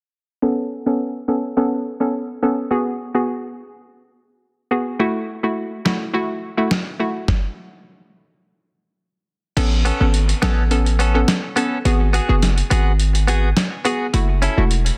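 A straight 4/4 dancehall groove at 105 BPM drives this hypnotic, tough excerpt, which opens on a hollow, bouncy square-wave pluck with chorus, sidechain pumping and a filter sweep over Aadd9, G#m7 and F#m7. A gritty, tape-colored sampler-style drum kit joins at 5.9 seconds before a stop at 7.3 seconds. From 9.6 seconds the kick drops out while a punchy, heavy 808-style bass comes in, followed at 9.8 seconds by a twangy, direct-recorded clean electric guitar playing arpeggios through digital delay, all set in light reverb under a dense, heavily limited modern master.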